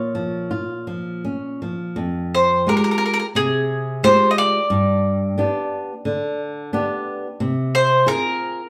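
A mellow, round mandolin with doubled strings picks out a passionate, mournful melody up front over fingerpicked flamenco guitar on fresh strings in this excerpt of a rubato fado-style ballad at 88 BPM in 4/4, the two played live in one room and bathed in a lush large-studio reverb as the chords move from Bbm through Fmadd9 and G to settle on Fm/C.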